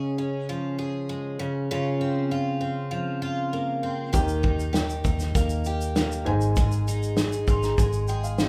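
A steady straight 4/4 at 98 BPM carries this easy-going, heartfelt acoustic pop excerpt in Ab major, where a shimmering, woody picked twelve-string acoustic guitar opens alone up front before a felt-muted upright piano with a mellow, intimate tone, a dark, round, foam-muted fingered electric bass and a natural country drum kit with punchy kick, snare and shaker all enter at 4.1 seconds, moving from Db through Eb to Ab in a large studio room as the piano adds a fill at 7.2 seconds.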